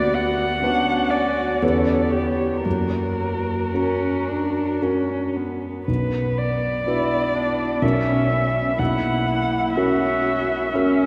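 A veiled, con sordino violin carries an elegiac melody with vibrato and portamento, up front beside a warm grand piano, while muted viola and cello add dark second-line and accompaniment voices in this slow, rubato classical piano-quartet movement in 3/4 at 55-65 BPM, moving through B minor harmonies within a cathedral-like reverb that lingers 4.9 seconds, cut from a longer piece.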